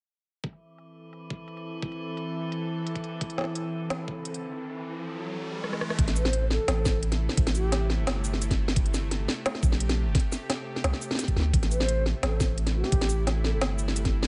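Half-time drum and bass at 173 BPM in A minor, heavy and dark, opening on an Am chord as an overdriven, knocking kick and an up-front kit of woody snare, crisp hats, rim click and shaker set the groove, soon joined by a nasal, string-like drone with 12-bit sampler grit and sidechain pumping holding sustained chords, while an eerie, wave-folded metallic drone with chorus hovers briefly, with filter sweeps on drums and drone. A riser and a drum fill lead into the drop at 6.0 seconds, where a deep, sine-like 808-style bass arrives and an airy, hollow concert flute, carrying vibrato, tape echo and sampler grit, plays short phrases from 6.2 and 11.7 seconds. The echo-heavy mix sits in light digital ambience, its top end rolled off, in this fragment cut from a longer piece.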